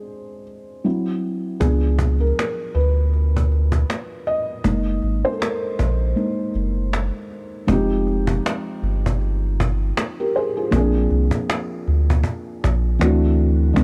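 A dark, intimate small-room sound frames this hazy, nostalgic lo-fi hip hop cut, taken from a longer piece and set in F dorian at a relaxed 79 BPM in 4/4 with a loose swing on the sixteenths. A felt-muted upright piano opens by itself, its thick-felt tone mellow and smooth with a vintage character, and it carries a featured solo across the opening section. At 1.6 seconds a soft dub sub bass and a cajon come in: the bass is deep, round and sustained with a fast attack, while the cajon sounds woody and band-limited, played with soft hands and faint snares. All three parts sit up front, with the sub bass the most prominent. A break arrives at 6.2 seconds, and from 7.7 seconds a new section moves the harmony through lush extended chords such as Fm9, Bb9 and D9, after opening passages built on Db7b9 and Gb69.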